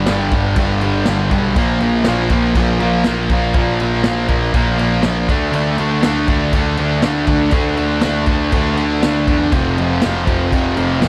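A thick, double-tracked fuzz guitar sits up front with a bright, distorted riff over a punchy overdriven picked bass and a vintage drum kit with dark cymbals and a rolled-off top, driving this raw, rowdy garage rock excerpt at a straight 120 BPM through G, Bb5, D5 and F5 in light reverb.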